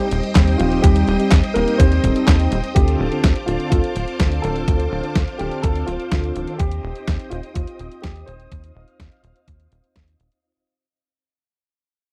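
A thumpy electronic kick and a detuned 8-bit drum machine's handclaps, hi-hat and medium-tuned snare drive a straight 125 BPM italo disco groove in C dorian, with a tight, punchy sawtooth sequencer bass up front. A dark concert grand piano with a deep low end carries the melody, and round, brassy synth stabs with chorus and 12-bit sampler grit play until 6.6 s. A lush string machine holds sustained chords that take a filter sweep as the nostalgic, melodramatic music moves from Cm/Eb to Dm7 and fades out from 2.8 s, heard in a dry, close 1970s-style studio sound with light reverb and vinyl crackle.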